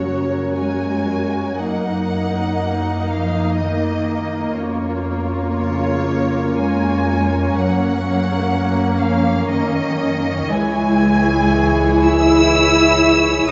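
Rubato and unevenly pulsed in three, this tender, moving cinematic passage, cut from a longer piece, sets con sordino violins singing a veiled, lush melody over a softer second violin line, with dark, muted violas, cellos and double basses beneath and a mellow, distant French horn section holding sustained chords inside a wet scoring-stage reverb.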